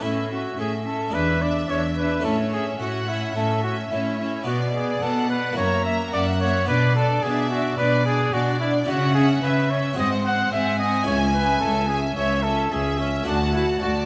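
A baroque-style classical concerto movement with solo episodes, this lively, brilliant passage moves at 109 BPM in a straight 4/4 in A major, cut from a longer piece. A warm, roomy solo trumpet carries the melody up front from C#4 to F#5 with light vibrato, joined by a clear, distant chamber violin section singing higher in the D5 to A5 range. From 1.1 seconds a rich studio violin section adds a focused, smooth-topped second line, while a chamber viola section fills in the accompaniment with vibrato. A close, even chamber cello section anchors the bass up front, and an airy Flemish-style harpsichord with octave strings sparkles in the background. The harmony moves from A through E7 into B minor and F#7, then turns toward C# minor with G#7 before landing on D, all set in a moderate scoring-stage reverb.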